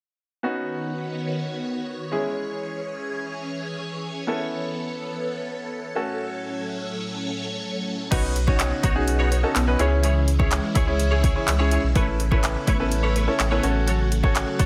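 A clear, present concert grand piano, pumping with the sidechain, opens this driving dance-pop excerpt at 125 BPM, joined by the sustained, pumping chords of a swirling, phased vintage string machine over a Badd9, C#m, Aadd9, F#m/A progression. At 8.1 seconds the energy lifts as a punchy house drum kit with crash, handclaps, bright hats and kick arrives alongside a round sub bass that pumps too, a twangy direct-recorded clean guitar riff with chorus, and very quiet detuned unison pluck arpeggios. The mix sits in light reverb, with the drums and bass up front.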